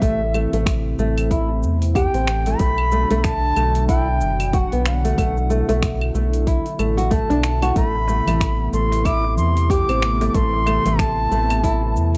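Hypnotic and earthy, this organic downtempo piece sways on a swung groove, with an airy, reedy bansuri carrying the melody through tape echo over fingerpicked nylon-string guitar arpeggios that are also echoed and carry a hint of finger squeak. A smooth, detuned analog pad holds mellow chords while it pumps along with a round, dark analog bass that sits up front, and an electronic kick and a produced afro-pop kit of claves, finger snaps, metallic hi-hat and shaker keep time. A soft-handed darbuka joins in the background at 8.0 s, and the recording has a dry, gritty hardware character in a small room.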